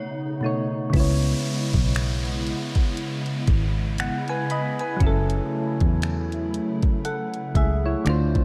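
Soft, round electric-piano-like synth keys with a gentle chorus sit up front in this moody, longing contemporary R&B excerpt in C# minor, swaying at a slow 59 BPM with a swung sixteenth-note feel. A hollow, flute-like pad with vintage warble and sidechain pumping holds sustained chords beneath them, while an inharmonic FM chime rings in the background during the opening break before a foam-muted fingered electric bass, a smooth drum kit of finger snaps, hi-hat and soft kick, and an electronic downlifter all enter at 0.9 seconds. The harmony moves from B9 to C#m7 and then F#m7 at 5.0 seconds, all bathed in a dreamy plate reverb.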